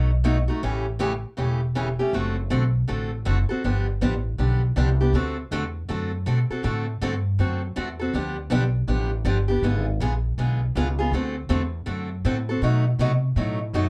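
Dark, lightly reverberant sound frames this charming, lively excerpt of acoustic jazz manouche string swing at 160 BPM in D mixolydian, with a bright, boxy parlour steel-string guitar picking up-front accompaniment, finger squeak and all, over a woody, growly pizzicato upright bass, both playing through the full 13.9 seconds as the changes move from B7 and A7 through D7, G7 and G#dim7 before landing on B7b9.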